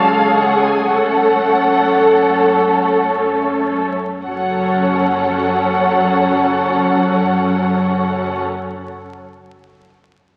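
Elegiac and solemn, this slow romantic movement for string orchestra in F# minor unfolds in free time, easing back over its first 4.3 seconds as a lush violin section sings the melody above a dark, expressive second violin line, smooth up-front violas, soft-attacked cellos and woody double basses sitting in the background, heard through the crackle of a very old 78 rpm record and the generous reverb of a concert hall.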